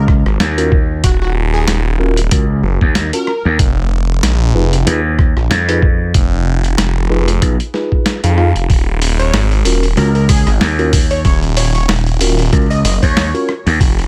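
This swaggering, gritty glitch hop cut sits in a digital ambience, with two up-front basses carrying most of the weight at 94 BPM in 4/4, a light 16th-note swing and Eb minor. A compressed, pitched-down electronic kick with a thumpy, tape-warm punch sits alongside a sampler-style boom bap kit of hi-hat, rim click and medium-tuned snare, both re-recorded in a small room. Underneath, a gritty slap bass with an overdriven, growly bite shares the low end with a swirling, thick detuned saw bass run through phaser and tube saturation. A mellow tine electric piano adds clean stabs that pump against the sidechain and trail off in tape echo. A plucky, catchy unison lead states the melody from 0.0 to 3.6 seconds and returns at 9.2 seconds. Its detuned sawtooth and noise layer are shaped by filter sweep, moving notch, vibrato, lush chorus and tape echo, as the harmony moves from Ebm7 to Fm7b5 and back.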